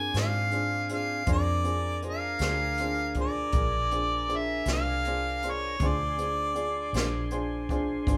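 A slow 12/8 blues at 53 BPM rolls along with a straight, laid-back, soulful feel on a Bb7 chord in Bb mixolydian, in this short cut from a longer piece played live by a band in one room with moderate studio reverb. A clear, overdriven harmonica leads up front in jazz style, with light vibrato, tongue slaps and scooped notes, before dropping out at 7.3 seconds. Beneath it, a woody, slightly detuned upright piano comps with short sustain, a smooth tonewheel organ holds clean chords with key click through a slow rotary speaker, a vintage foam-muted electric bass plays dark and round, and a brushed jazz kit with a punchy kick and medium-tuned snare comes in at 0.1 seconds.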